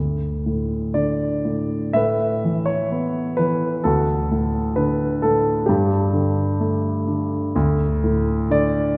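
Peaceful and calm, this brief passage cut from a longer classical piece features a solo concert grand piano with deep bass and an up-front presence, playing lyrically in D major with rubato at roughly 60-68 BPM over suspended harmonies that settle back to D, all bathed in the long, wet reverb of a church.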